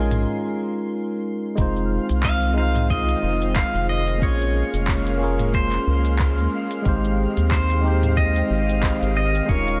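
This sunset chillout piece has a relaxed, smooth swing and is cut from a longer track. A bright, twangy pedal steel guitar carries the melody with fingerpicked slide lines, volume swells and delay, over a clean, direct tine electric piano that also has delay. A deep, round analog bass sits up front, while a silky vintage string machine holds sustained chords with ensemble chorus in the background, and a twinkling granular texture adds sparkling, octave-up shimmer high above. A tape-toned R&B drum kit of cabasa, handclaps, smooth hi-hats and toms sets the groove, and after a break from 0.3 to 1.6 seconds a soft electronic kick drum joins in. The chords move from Eb9sus4 to Fm7, Bbm9 and Abmaj7, all framed by light digital ambience and a dense, heavily limited modern master.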